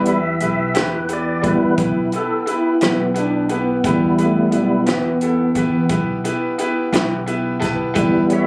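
A slow 12/8 blues at 58 beats per minute rolls under this mournful, soulful excerpt over an E minor chord, cut from a longer piece and captured on a phone in a club with moderate reverb. A fat, lightly overdriven tonewheel organ leads up front with sustained chords, chorus vibrato, key click and a slow rotary speaker, over woody pizzicato upright bass and a compact cocktail kit with a high-tuned snare and punchy kick. A bright, brilliant grand piano accompanies and adds a fill from 6.9 to 8.0 seconds, while a dark, slightly broken-up electric guitar through a small old amp plays picked tremolo parts from 0.8 to 7.2 seconds.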